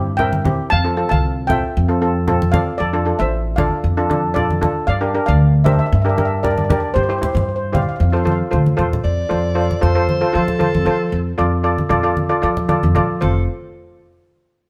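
A mellow lead steel pan, played with soft rubber sticks and heard close and dry, carries the melody of this bouncy, sunny calypso in F major at 115 BPM until 8.4 seconds. A shimmering double-seconds pan struck with hard rubber sticks provides the accompaniment, while a woody, thumpy pizzicato upright bass sits up front and bright, low-tuned congas sound close and dry. After a short fill at 8.7 seconds, a breathy alto saxophone enters at 9.0 seconds with a jazz-style second line full of vibrato and scooped notes, as the live band shares a moderate stone-room reverb in this clip cut from a longer piece.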